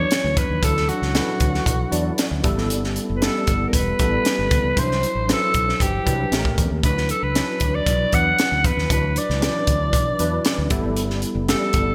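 A growling, breathy alto saxophone carries the melody up front in this upbeat, urban slice of polished 1980s jazz-funk pop, moving at 116 BPM in D major over chords such as D69, G69, Cmaj9#11 and A7b9. Beneath it, a worn, slightly out-of-tune tine electric piano with ensemble chorus supplies the accompaniment, while a round, dark fretless bass with analog chorus holds the low end. A punchy, saturated fusion drum kit with a high-tuned snare joins at 0.1 s, and a lush hall reverb frames the bright digital production.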